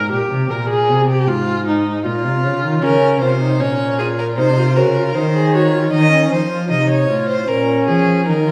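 A stone room's reverb, with a 1.2-second decay, puts the listener further back in the space, yet each bowed instrument still sits up front in the balance. This is a short cut from a longer baroque-style fugue for string quartet in Bb minor, moving at 77 BPM in a straight 4/4 with a solemn, driving mood. The cello anchors the bass from the start with soft attacks, expressive vibrato and portamento, while the viola carries the accompaniment above it, with a smooth top to its tone and equally expressive with its own sliding portamento. At 2.8 seconds a single violin enters as a second line, close and even, its warm vibrato tone moving smoothly over the lower strings. The harmony moves through Bb minor, a diminished chord and a dominant seventh before settling back on Bb minor, giving the passage a grave, purposeful pull.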